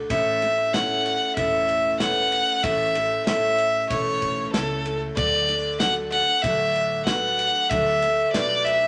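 A picked steel-string acoustic guitar opens this short honky-tonk and classic country excerpt, full-bodied on its dreadnought tone with a touch of finger squeak, and within a moment a clear, focused fiddle takes the melody up front, bowed by a single player with light vibrato. Underneath, a pizzicato upright bass with steel strings gives a woody, thumpy low end, while a natural country drum kit sits in the background with a punchy kick, medium-tuned snare and dark ride cymbal in a small-room sound. At 0.7 seconds a dark upright piano joins, mellow and boxy, with audible action noise and long sustain adding an intimate layer behind the others. The mood is sunny and heartfelt at 95 BPM in straight 4/4, settling on an A chord before moving to D at 5.2 seconds in the key of D major. A wet studio reverb gives the ensemble a gentle sense of space around the close, clear fiddle.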